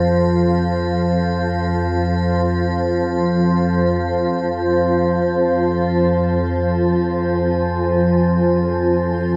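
Desolate and dark, this free-time dark ambient drone excerpt rests on a single F minor chord for 9.4 seconds, with an up-front, warbling organ-like drone in the low register beneath a cloudy, evolving granular pad and a faint, eerie, metallic inharmonic tone around C5, all steeped in a huge, wet reverb and tuned to A4 = 439 Hz.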